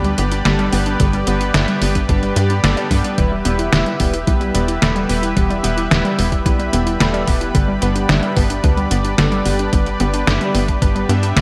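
Synthwave at 110 BPM in a straight 4/4, this short excerpt from a longer piece has a nocturnal, cinematic mood, moving from G to Em at 3.2 seconds and back to G at 7.5 seconds. A soft, full-bodied supersaw holds sustained chords through the whole passage, roughened by vintage 12-bit sampler grit and pumping with sidechain compression. Beneath it, a warbly, dusty pluck sits in the background playing lo-fi arpeggios with chorus, cassette tape character and delay, while a glossy, retro polysynth adds chorused stabs with its own delay. A tight, punchy sequencer bass drives the low end up front, and a detuned 8-bit drum machine supplies overdriven hi-hat and a medium-tuned snare that sounds re-recorded in a large room. An overdriven, thumpy electronic kick arrives at 1.0 seconds and drops out at 10.9 seconds, all set in a moderate plate reverb with bright 1980s-style digital production.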